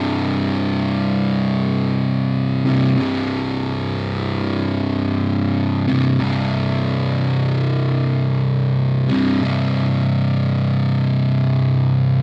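A dry, close recording in a 1970s studio style, with moderate booth ambience, opens this hypnotic, sludgy metal fragment cut from a longer piece. A lone electric fuzz guitar, double-tracked, compressed and distorted, sits up front and plays in free time from 0.0 to 12.2 seconds, picking a C5 power chord in a low register between C2 and C3. The instrument is tuned slightly sharp, to A4 = 441 Hz.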